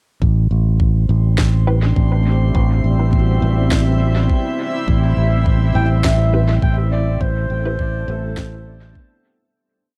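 A fingered electric bass sits up front in this short ambient dub piece, carrying a dub-style line on A1 with a warm, amped tone that anchors a spacious, meditative mood. Beneath it a soft, tape-warm electronic kick keeps a slow pulse, while a woody snare drops into a sparse, echoing beat, both re-recorded in a small room. A blurred, granular cloud pad drifts in slowly shifting chords, moving from Cmaj7/A to Am7 at 4.9 seconds, and a glassy, chorused texture of drifting overtones holds a high note above it. In the background, filtered dub chord stabs flicker with phaser and echo, one shape moved in parallel, as a very quiet, close-miked handpan rings out four slow loops of unequal length that drift against each other. A mellow, distant clarinet enters at 5.8 seconds with short call phrases trailed by tape echo, just as the mix, dry on reverb overall but heavy with echo, begins fading out at 6.4 seconds.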